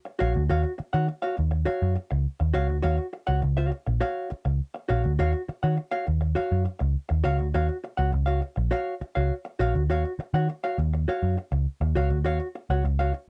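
A straight 4/4 funk groove at 102 BPM sets a sly, funky mood in Eb minor over a single Ebm9 chord, with a round, punchy, foam-muted picked electric bass carrying tube saturation and sitting forward in the mix, while a clean, compressed hollow-body jazz guitar plays dark accompaniment in a higher register, all captured in a dry, close 1970s-style studio sound in this short excerpt cut from a longer piece.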